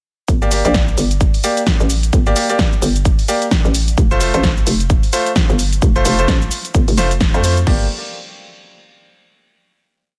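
A hollow, knocking FM bass with tube saturation and sidechain pumping drives this aggressive, bouncy bass house piece in G minor at 130 BPM with a 16th-note swing, joined by a punchy four-on-the-floor electronic kick, a big-room kit with a huge snare, shaker, hats and crash, and bright grand piano chord stabs pumping through digital delay, all moving from Gm to F through the drop, with a band accent at 7.2 seconds before a final Gm chord at 7.7 seconds.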